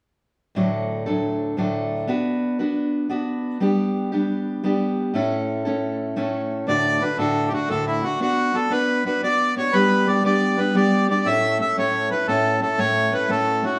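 Cheerful and lively, this Celtic slip jig in 9/8 at 118 BPM in D major opens at 0.5 s with a dark, full-bodied fingerpicked dreadnought guitar with fresh strings cycling through D, Bm, G and A. A reedy, mid-forward accordion joins up front with the melody at 6.7 s, and both parts sit in a live-in-one-room sound bathed in a wet, large studio reverb.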